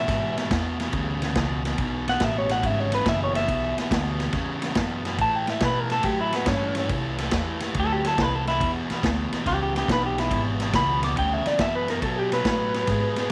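Electric blues shuffle with a gritty, swaggering mood, cut from a longer piece and moving from E9 to A9 and Am before returning to E9 and landing on B5. A dark, slightly broken-up lead guitar through a small old amp carries the melody up front, its fingered lines compressed and lo-fi with a slapback echo, while a warm, overdriven picked guitar drives the low riff. Woody pizzicato upright bass and a vintage kit with a tight kick, medium-tuned snare and dark ride cymbal sit in a small room with light reverb.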